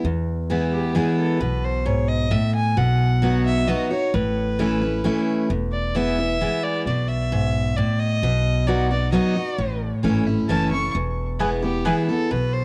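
Rustic and lively, this bluegrass fragment in three, cut from a longer piece and recorded at home on cassette with light reverb, puts a full-bodied picked dreadnought guitar up front over a thumpy, woody pizzicato upright bass, while a nasal, reedy bowed fiddle with analog delay carries the melody from 0.7 s and a double-strung mandolin adds brief stabs at 11.4 s.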